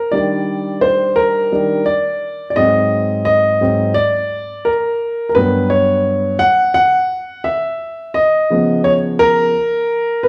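A swung sixteenth feel at 86 BPM in 4/4 carries this cool, smooth hip hop cut from a longer piece, where an intimate, up-front solo grand piano with audible action noise moves through Ebmaj7, Ab7, Gmaj7#11 and Db13 over 10.3 seconds, set in a wet large-studio reverb with a live-room feel.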